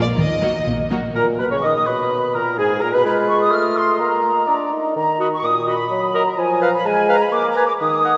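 An airy, up-front flute section with vibrato carries a high line through most of this graceful, cheerful fragment of a quick classical-period movement in Eb minor at 126 BPM. It enters at about 1.2 s together with a lightly vibrato oboe and a prominent bassoon underneath, just after a soft-attack clarinet with a mellow tone arrives at 1.1 s. They take over from a brief opening of bowed strings: an expressive violin melody with portamento, a second violin section and a rich, smooth viola in the background, and a focused cello and clear double bass section holding the bass, all within the first 1.1 s. A wet church reverb with a long tail surrounds the whole ensemble, giving a rounded, softened sound.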